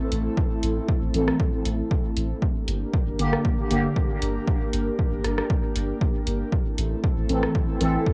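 Hazy and hypnotic, this short dub techno cut at 117 BPM in A phrygian, taken from a longer piece, moves from Am to Gm and back over a deep, round sub bass and an up-front punchy electronic kick, while a breathy, detuned pad pumps with chorus and cassette-tape grit, a punchy analog drum machine adds echoing hi-hat and rim click, and a juicy, resonant polysynth delivers dark stabs through a filter sweep and phaser from 1.1 to 3.8 seconds and again at 7.3 seconds, all captured as a dry home cassette recording.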